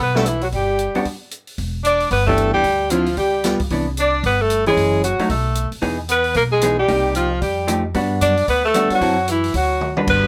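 A swinging 4/4 groove carries this small-group jazz passage in a modest club room, where a clear, up-front alto saxophone sings the melody with vibrato over a raspy, growling tenor saxophone second line, a woody pizzicato upright bass, a dark, compressed hollow-body electric guitar comping up front from 0.2 seconds, and an acoustic kit with dusky cymbals and a boomy kick; the passage pauses for a brief break at 1.1 seconds, and the kit closes with a fill at 9.8 seconds.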